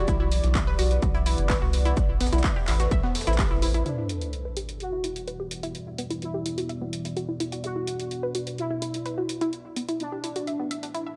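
Melodic techno at 127 BPM in E minor, hypnotic and melancholic, where a moody, detuned ambient pad and a bright, chorused analog pluck arpeggio with tape echo pump against an overdriven kick, a round, up-front analog bass, a faint evolving drone, a gritty, very quiet breakbeat kit and a techno kit of handclaps and hi-hat. The kick, breakbeat kit and bass drop out in turn before the drone fades at 3.9 seconds, when a sub drop impact lands and a juicy, resonant polysynth melody enters as filter sweeps move across both it and the arpeggio over Em7, Bm and Amadd9 chords in a dry, cassette-tinged recording.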